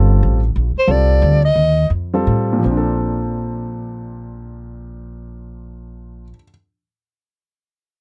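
Jazz in a swung 3/4 at 155-183 BPM in Bb major, spiritual and open in mood: a dark, breathy soprano saxophone with vibrato and a whispered subtone carries a brief solo phrase from 0.8 seconds over an intimate grand piano with audible action noise and a woody pizzicato upright bass, as the tempo slows and the harmony moves from Ebmaj9 to Bbmaj9 at 2.6 seconds, all captured in a dry, close 1970s-style studio sound in this short cut from a longer piece.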